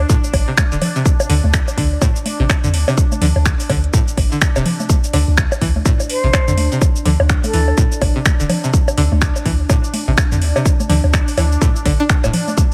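Lightly reverberant, this quirky, clinical minimal techno excerpt at 125 BPM, swung on the 16ths, is driven by an up-front punchy electronic kick and a tape-warm house kit of cabasa, finger snaps and metallic hi-hats, with overdriven bongos and congas through digital delay, a deep pitch-dropping sine sub bass pumping under sidechain, a twangy, bright resonator pluck riff with chorus and tape echo, a bubbling, resonant stepped-filter texture, and an airy, distant concert flute with 12-bit sampler grit that surfaces only from 6.1 to 7.8 seconds.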